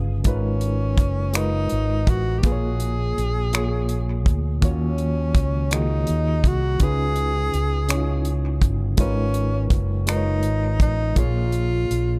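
A barky, lightly overdriven electric piano with harmonic tremolo and a round, amped fretless bass open this slow, sultry six-eight R&B piece at 55 BPM in G# dorian. A dry, damped 70s drum kit of finger snaps, hi-hat and tight kick joins at 0.2 s, and from 0.3 s a breathy tenor saxophone carries the yearning melody in a jazz style, with vibrato, scooped notes and analog delay, over chords moving from G#m69 through A#m7, D#m7 and C#9. The bass and drums sit up front in an echo-heavy studio reverb.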